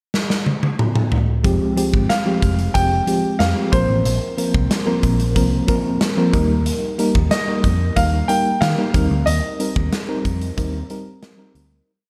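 This glossy, romantic 1980s-style pop piece opens with a big rock drum fill over a pickup bar, the up-front acoustic kit ringing in a stone room with a punchy kick and medium-tuned snare. At 1.4 seconds the verse begins at a straight 92 BPM in 4/4. A round, foam-muted electric bass plays a syncopated pop-funk line with slides and chromatic approach notes, and a mellow FM electric piano with tremolo plays syncopated chords in drop-2 voicings. From 2.1 seconds a brilliant, polished concert grand piano with tape echo carries a short-sustained, motif-based melody in song-like phrases. The harmony moves through Fmadd9, Bbsus2, Eb and Cm7 under a big backbeat. The dark production sits in a moderate plate reverb, and the piece fades out from 9.3 seconds.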